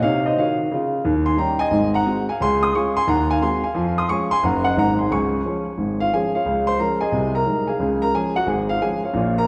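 A solo concert grand piano opens at 0.0 seconds, playing exuberant, swinging stride jazz in Db major at a brisk 178 BPM in 4/4, with a moderate swing on the eighth notes. The instrument sits up front, its warm tone marked by a deep bass, an open character and long sustain across a range from Gb1 up to Eb6. The harmony moves through a rootless Bbm, Eb7 and Ab7 before settling on Db, then passes through inverted chords such as Ab7/Eb, Db/F and Ebm/Gb on the way back home. The same section begins again at 6.5 seconds, returning to Db via Ab7/C before this short excerpt ends at 9.5 seconds. A wet, lingering reverb gives the piano the spacious sound of a church or concert hall.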